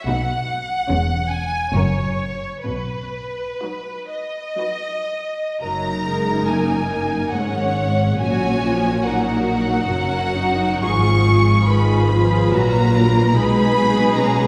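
Tender and warm, this slow, rubato romantic movement for string orchestra in 3/4 moves from B major into F# major at 5.6 s, with a lush, vibrato-rich violin section singing the melody over a second violin line, smooth viola accompaniment, even cellos and focused double basses, all bowed and set back in a scoring-stage reverb.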